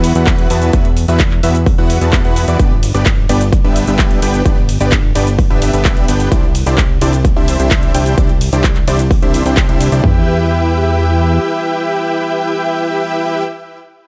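At 129 BPM in a straight 4/4, this festival progressive house excerpt opens on a drop, with a big-room electronic drum kit driving a punchy, up-front kick and toms from 0.3 seconds, while handclaps, metallic hi-hats, ride cymbal and shaker sit further back in the layered mix. The mood is emotional and powerful, set in E minor and moving through Esus2, G and Cadd9 before landing on Em. A huge, dense supersaw riff carries the lead, its detuned sawtooth unison stack thickened by a sub octave and an airy noise layer, with vibrato, digital delay and sidechain pumping. Beneath it, a fat analog bass plays low, its detuned sawtooth and square tones colored by ring modulation and a filter sweep, breathing with the same sidechain pumping. The drums drop out around 10 seconds as a new section begins, the bass stops at 11.4 seconds, and the supersaw rings on until 13.4 seconds. The sound is dry and close, with little reverb and a loud, compressed overall level.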